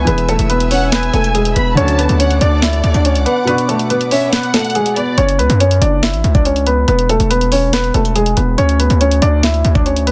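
Hard-hitting, brooding trap hip hop in F# minor at 141 BPM with a half-time feel, led by a dark, mellow baby grand piano melody over a heavy, distorted 808 bass and a knocking, up-front trap drum kit with sharp snare and bright hats whose kick drops out from 3.5 to 5.2 seconds, while an expressive, gliding violin section with tape echo, a soft felt-muted upright piano and lush background strings fill the opening before falling away at 5.2 seconds, joined by a brief vintage brass stab at 1.8 seconds, set in a dense, heavily limited master cut from a longer piece.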